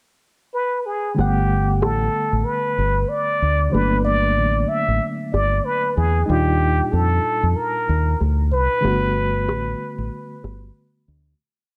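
Warm and smooth, this short neo-soul and R&B piece moves with a swung sixteenth-note feel. A trumpet with a plunger mute carries the melody from 0.5 seconds, singing jazz-style motifs with wah-wah colour, vibrato and scooped notes, set up front and trailed by tape echo. Beneath it, an electric piano with a barky, reedy bite holds drop-2 chords with grace notes, its fast tremolo heard through built-in speakers. A deep, round fingered electric bass enters at 1.2 seconds with a punchy, laid-back line full of slides, sitting dark and direct at the front of the mix. The harmony moves from Gmaj9 to Ebmaj9 and back, the small-room sound is echo-heavy with light reverb, and the piece fades out from 8.8 seconds.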